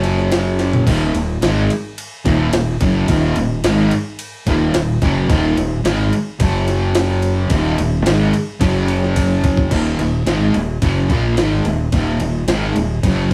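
A crunchy overdriven guitar sits up front, picking a heavy riff colored by a harmonic tremolo that gives its tone a wavering edge. Behind it, a sludgy distorted guitar picks a riff in the same register, adding thick, murky weight from the background. A growling fingered electric bass, overdriven and punchy, anchors the low end with a direct, amped bite. The drums have a gritty, pitched-up, sampler-style character, with a thumpy kick, a high-tuned snare and a compressed, tape-warm sheen, cutting through up front with crashes, ride, splash and toms and firing off fills at 0.6 seconds and again just before the arrangement shifts into a new section at 9.7 seconds. The whole track is an aggressive, heavy hard rock passage, cut from a longer piece, with a rough rehearsal-room feel and a small, wet room reverb.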